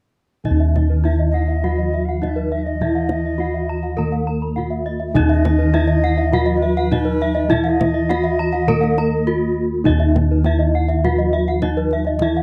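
This Balinese gamelan excerpt has a brilliant, ceremonial mood in a straight four-beat pulse. Bronze metallophones carry the texture: a lower accompaniment part, a mid-range melody, and two higher arpeggio lines. Each is tuned in pairs, so the ringing tones shimmer with beating, and some are struck with horn mallets for a bright edge while others use wooden ones. Bossed gongs hold the bass with a round, full, up-front sound. A kendang sits in the background with tight, soft-handed strokes, and plays a drum fill from 9.4 to 9.9 seconds. An alto recorder adds a quiet second line from 1.3 to 9.7 seconds, airy and woody with vibrato, a gentle chiff and lifted highs, in a dry, close 1970s-style studio sound.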